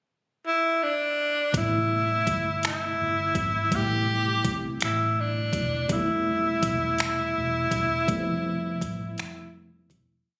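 A breathy, whispered tenor saxophone sits up front with a bright, soft-attack melody of scooped, vibrato-laden notes built from song-like motifs, playing alone over a brief pickup from 0.5 seconds. At 1.5 seconds a slow, sultry late-night six-eight R&B groove at 55 BPM in A minor settles in beneath it: a mellow tine electric piano holds rootless chords with grace notes, a dark, foam-muted fingered bass slides through chromatic approach notes, and a produced electronic kit of knocking kick, finger snaps and tape-warm hi-hat keeps the beat while the harmony moves from Am9 to Fmaj9#11. The short, intimate piece has a close, compressed sound and fades out from 8.1 seconds.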